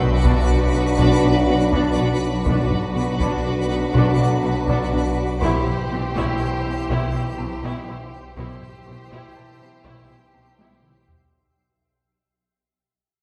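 A wet, church-like hall reverb surrounds this short, ominous cut from a longer suspense film score, which moves at a slow 61 BPM in 3/4 and fades out across its whole length. Muted, veiled string sections sit in the background: violins carry a melody and a second line, while violas add lush accompaniment and a very quiet cello and double bass section hold the bass. Mellow, distant French horns sustain chords, and a twinkling granular texture with an octave-up shimmer sparkles above them. Underneath, a swarming, warbling drone with phaser tension sits on a low B. A woody, rustic marimba plays a dry riff, and a polished grand piano adds short-sustain texture. A very quiet, saturated taiko ensemble enters at 0.2 s and closes with a drum fill at 10.6 s, as the harmony moves from B minor to C over B at 5.4 s.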